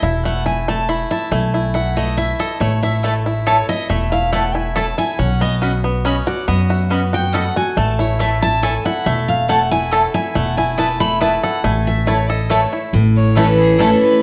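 A lively, virtuosic bluegrass piece in 3/4 at 139 BPM in A lydian, this brief excerpt from a longer piece puts a bright, freshly strung dreadnought guitar up front for a picked solo, with twangy fingerpicked banjo arpeggios and thumpy, dark gut-string upright bass beside it. Woody double-strung mandolin stabs arrive at 3.0 seconds, and a biting, earthy bowed fiddle takes over the lead at 13.2 seconds, all over Esus4, A and Badd9 chords in a moderate large-studio reverb.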